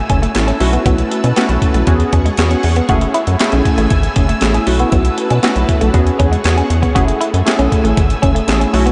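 A rubbery, bouncy square-wave bass sits up front in this smooth, danceable early-eighties boogie funk excerpt at 118 BPM, alongside a gritty, compressed breakbeat sampler-style kit with thumpy kick, snare, hi-hat and handclaps, a clean semi-hollow electric guitar riff with analog chorus, a punchy polysynth comp from 0.3 s and lush sustained string-machine chords, with the mix soaked in huge, dreamy reverb over an F#m9, B7sus4 and E69 progression.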